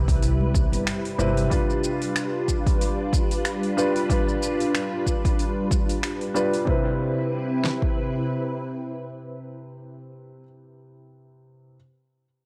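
An overdriven, electronic deep house drum kit sits up front with a punchy kick and fat snare, while a quieter layer of finger snaps, metallic hi-hats and shaker joins in this sunny sunset chillout excerpt, which moves with a gentle swing on the sixteenths. A silky, mellow string machine holds slow-attack chords with phaser and ensemble chorus, and a natural-sounding baby grand piano, touched by tape echo, plays accompaniment over a Cmaj7 to G7 progression. A woody, thumpy pizzicato upright bass on gut strings appears only briefly before stopping at 1.4 s, alongside a very faint touch of bright, soft-handed congas. The drums drop out at 8.0 s, and after the strings stop at 10.0 s the piano plays alone. The whole piece carries a warm, gritty cassette-tape character with light reverb and small room ambience.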